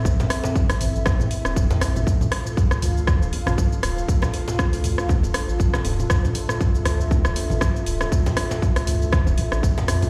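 An afro house groove at 119 BPM in 4/4 rolls with a light 16th-note swing, driven by a punchy, overdriven electronic kick sitting up front and a layered house kit of hi-hat, rim click, shaker and toms, also overdriven and given the air of a large room. Beneath it, a round, deep analog bass with a fast attack holds sustained notes from D1 to A2, breathing with sidechain pumping, while congas with hard hands and a thin, bright skin tick away in the background and a very quiet djembe adds deep, earthy weight. Over the top, a moody analog pad built from detuned square, sawtooth and triangle waves with a sub octave and wave-folded edge holds slow-attack chords between C4 and F5, thickened by chorus and breathing with sidechain pumping. The harmony moves from Am to Dm at 2.1 seconds, giving this short cut from a longer piece a dark yet earthy, warm mood. The mix stays fairly dry overall, with the drum kit and kick carrying the sense of a big sound system in a bare room.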